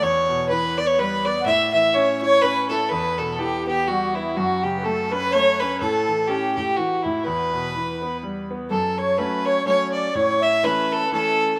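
Celtic folk waltz in 3/4 at 124 BPM with a lilting swing, spirited and driving, cut from a longer piece and moving through chords such as Em, A and F#m. A rich, nasal, earthy fiddle carries the melody up front, joined by a reedy, round, airy accordion on a second line, while a bright concert grand piano with deep bass supplies the accompaniment throughout. The rough home demo mix sits in a lush hall reverb, shifting from its opening section to a new passage at 8.7 seconds.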